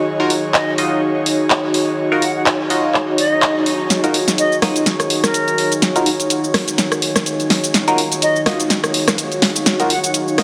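A swung 125 BPM house groove in 4/4 drives this aggressive, swaggering bass house excerpt in Eb minor, with a punchy, up-front electronic kit of handclaps, bright hi-hats, rim clicks, shaker and snare set in studio reverb under a deep, moody pad carrying chorus and vintage 12-bit sampler grit, an airy, breathy pad with chorus, and a band-passed, nasal sawtooth chord stab treated with phaser and delay. A distant silver concert flute with a crisp attack and straight tone carries the melody through delay from 0.5 seconds, while a background electronic swell at 3.1 seconds leads into a build-up from 3.9 seconds with a drum fill and a filter sweep on the stab. The whole mix sits in a lush hall reverb and is heavily compressed into a radio-style sound.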